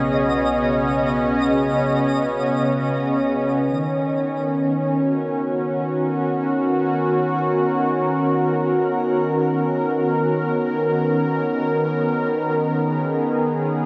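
Drenched in vast, echoing cathedral reverb, this serene ambient excerpt in free time and B major opens with a smooth, detuned sawtooth analog pad up front, softly sustaining chords through chorus, tremolo and shimmer reverb until 13.9 seconds, while a distant bowed chamber double bass section with earthy bite and light vibrato fades out in the background and a twinkling FM granular texture with octave-up sparkle hovers above until 3.7 seconds, when the harmony moves from Badd9 to Bmaj9 and the pad carries on alone.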